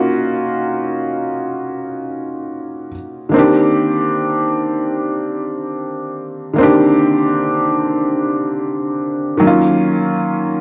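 R&B in free time and C minor, this late-night, moody excerpt features a solo felt-muted upright piano, soft and intimate with thin felt, audible action noise and an up-front presence, moving from Ebm9 to Cm9 and back to Ebm9 at 9.4 seconds across a range of D3 to G4 under light studio reverb in a dry, gritty recording tuned to A4 = 439 Hz.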